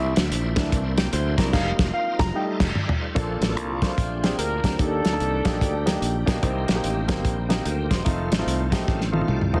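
A muffled, lo-fi soul drum kit with a fat snare and tight kick sits up front in this soulful, uplifting swung gospel excerpt, joined by a growly, bright fingered electric bass and a woody upright piano that takes a featured solo through the opening 3.2 seconds. A shouting tonewheel organ with slow rotary speaker, overdrive and chorus vibrato holds chords in the background, while a very quiet, dark French horn section sustains chords early and a clean, picked electric guitar adds a brief second line. A smooth horn section with light vibrato carries the melody from 3.6 seconds, framed by a band accent and drum fills in a dense, heavily limited mix with light reverb.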